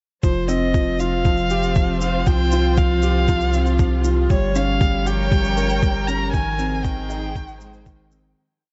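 Piano and strings electronica with an intimate, melancholic mood, this short piece is one continuous build that begins fading out at 5.7 seconds. A felt-muted upright piano carries the main riff, a mellow, vintage-toned arpeggiated sequence of 16 steps. Beneath it, a round analog bass holds deep, sustained root notes and pumps with sidechain compression, as does a distant chamber string section bowing slowly shifting chords. A single dark violin sings a motif-based melody on top, expressive with vibrato and portamento. A muffled, thumpy electronic kick drives a steady four-on-the-floor pulse, while an overdriven electronic shaker sits far back in the mix. The small room ambience keeps the sound soft and dull at the top, moving through Fsus2, Csus4, Gdim and Abmaj7.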